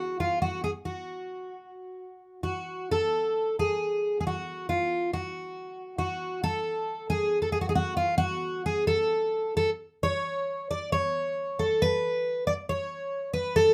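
Fado in F# harmonic minor, this mournful, longing excerpt moves at 68 BPM in 2/4 with a loose rubato feel, tuned slightly above standard pitch at A4 = 441 Hz. A fingerpicked twelve-string acoustic guitar plays alone throughout its 13.7 seconds, its full-bodied, octave-doubled jumbo tone shimmering up front as the melody stays between E#4 and D5. Light reverb surrounds the guitar.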